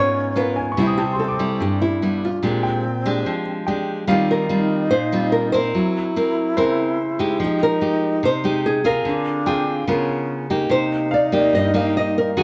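Bossa nova at 145 BPM in a romantic, breezy mood, this short cut from a longer piece sets a thumb-plucked nylon-string guitar melody with audible finger squeak over a full-bodied, fingerpicked nylon-string accompaniment with fresh strings, alongside a bright, airy alto flute line with vibrato, and is joined from 0.6 s by a clear baby grand piano with audible action noise and long sustain, all in light reverb as the harmony settles into Eb major at 4.1 s and moves through rich extended chords such as Gb7#11 and Db13 to close on Cm7.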